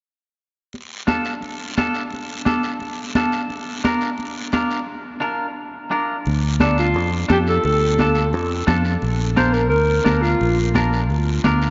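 A straight 4/4 cumbia pulse drives this fiery latin excerpt at 174 BPM in D minor, carried from 0.7 seconds by close, dry congas with a ringing, high-tuned tone and soft hands, alongside a raspy guiro set low in the mix. A brilliant, clean semi-hollow electric guitar joins at 1.1 seconds, picked and compressed with a hollow-body voice, playing accompaniment up front over a simple Dm to Bb progression. After a break from 4.9 seconds, the second section opens at 6.3 seconds as a punchy fingered electric bass arrives, direct and amped and sitting prominently low in the arrangement. Moments later a breathy alto saxophone takes the solo melody, its vintage, whispered tone marked by vibrato, soft attacks and scooped pitches in an intimate pop style. The whole performance sits in a vast, echoing cathedral-like space with a long reverb tail and a dark top end, giving the driving groove a distant, cavernous glow as the fragment cuts off at 11.7 seconds.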